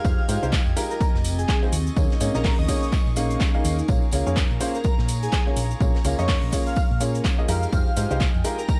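Soulful and bittersweet, this piano house excerpt swings over Fm9 and Bbm7 chords, carried by a clear, woody, slightly detuned upright piano riff with delay and sidechain pumping, an airy, dreamy lead melody with chorus and delay, and a round, hollow-body electric bass that also pumps. A punchy, overdriven electronic kick sits up front beside a house kit of metallic hats, cabasa and handclaps, while a very quiet acoustic rock kit and a tambourine with shaker and group handclap tones add snare and jingle far underneath. Rich, reedy chamber strings with 12-bit sampler grit and sidechain pumping hold sustained chords in the background, and from 0.9 s a cloudy granular pad drifts in, all set in a dark, small-room production.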